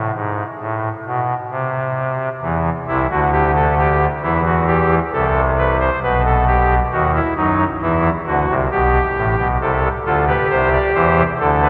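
Heard through a long, wet cathedral reverb with audible lossy compression artefacts, this contemplative yet driving cut from a longer baroque-style three-part fugue in A minor moves at 67 BPM in 4/4, carried by a single up-front pipe organ playing alone on a soft reed oboe stop with romantic voicing and tremulant, spanning A1 to D5 as the harmony passes from Em through B and back to Em before settling on Am/C.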